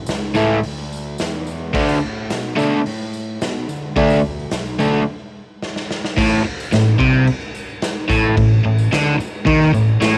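A round, fuzzed-out electric bass opens this raw, swaggering garage rock excerpt at a straight 109 BPM, joined at once by a gritty, saturated drum kit with a punchy kick and rolled-off top ringing in a stone room, while a jingly tambourine sits back in the mix. At 0.4 seconds a crunchy, bright, double-tracked guitar riff arrives up front, moving from A to D5. After a break with a drum fill at 5.6 seconds, the tune shifts onto an Amadd11 chord at 6.2 seconds, all carrying the feel of a home cassette recording with light reverb.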